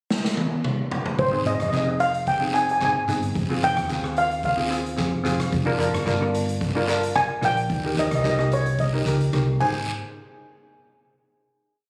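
This short, festive calypso sounds as if it was captured on a phone in a small room, with a light touch of reverb and compression. At 110 BPM in Ab major, a street-band drum kit opens alone with a fill across the pickup bar, its big-room acoustic sound carrying a boomy kick, a medium-tuned snare and dusky cymbals. Around 1.2 seconds the band joins for a single bouncy verse over Ab, Fmadd9, Bb/F and Eb. Up front, a lead steel pan struck with soft rubber sticks sings a mellow, smooth, free melody that never settles on a recurring motif, while a second pan with hard rubber sticks adds bright, shimmering triad chords in a rhythmic pattern. Underneath, a hollow-body short-scale electric bass plays a round, punchy syncopated figure, and a close, dry guiro scrapes a raspy pattern. Another drum fill at 9.6 seconds leads back to Ab, and the piece closes on a final hit from 9.9 seconds.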